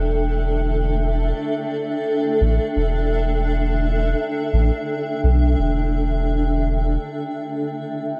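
Light reverb opens up a spacious, deep ambient dub passage with a gentle swing, where a cloudy, evolving granular pad sustains blurred, detuned chords through its own reverb while a round, soft sub bass sits up front until it stops at 7.0 s, leaving the pad alone until 8.2 s.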